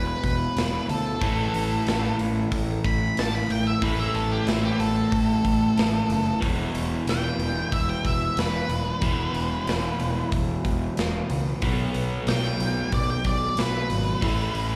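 A straight 4/4 groove at 92 BPM drives this gritty, swaggering blues rock and southern rock power-trio cut, heard live through a club PA with light reverb, as a dark octave-fuzz lead guitar solos with slapback echo over a double-tracked, crunchy rhythm guitar riff on E5, A5 and B5 chords, a growly overdriven fingered bass, and a big, up-front acoustic drum kit with punchy kick and medium-tuned snare that enters at 0.2 seconds.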